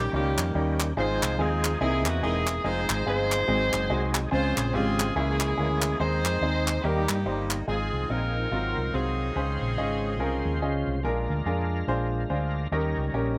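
An edgy, up-front saxophone section leads this uplifting, hopeful uptempo gospel clip, carrying the melody with jazz-style vibrato at a swung 143 BPM in 4/4, in Ab major. Beside it, a clear concert grand piano plays polished, intimate accompaniment with audible action and deep bass. In the background, a gritty overdriven tonewheel organ holds thick sustained chords through a slow rotary speaker with chorus vibrato and key click. A round, dark hollow-body electric bass sits up front, and close, dry group handclaps join at 0.4 seconds before dropping out at 7.6 seconds. The harmony passes through chords such as Eb7, C7alt, Fm7, Dbmaj7 and Dbm6, then moves through Ab6 and Ab13 to Bb7 and a closing Eb7. The saxophones stop at 10.9 seconds, leaving piano, organ and bass to carry the final bars, with plate reverb on the horns, piano and organ and a light small-room ambience around the mix.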